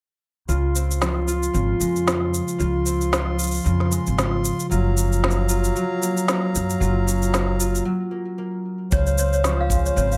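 A moderate studio reverb gives this pastoral folktronica excerpt a cozy room sound, moving at 114 BPM in 4/4 with a light sixteenth-note swing in Db major. A bright, ringing concert harp plays fingerpicked arpeggios up front beside a dark, thumpy pizzicato upright bass with tube saturation. A reedy, nasal harmonium holds sustained chords under a filter sweep while an overdriven electronic shaker and woody snare keep time, the harmony moving from Dbmaj7 to Gbmaj7. After a break at 7.9 seconds, a punchy acoustic kick and a clanky, bell-like toy piano with delay and plate reverb join at 8.9 seconds as the chords return to Dbmaj7.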